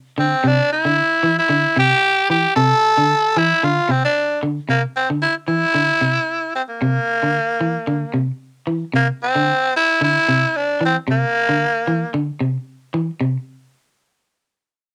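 Afrobeat with a driving, funky feel, this short cut from a longer piece moves at 113 BPM in 4/4 with a light swing on the sixteenths, centred on C mixolydian over a sustained Cadd9 harmony. A breathy tenor saxophone carries the melody up front from 0.2 seconds, its bright, raspy, gritty tone shaded with vibrato and delivered in a pop-style solo voice that sits in a fairly narrow middle register. Beneath it, a picked electric guitar plays arpeggios low in its range, its twangy sound pushed just to the edge of break-up and also placed up front, though a little lower in level than the horn. The saxophone drops out at 12.1 seconds, and the guitar carries on until 13.4 seconds as the harmony falls away at 13.2 seconds. Light reverb and the soft haze of a home cassette recording give the whole piece a lo-fi, intimate character.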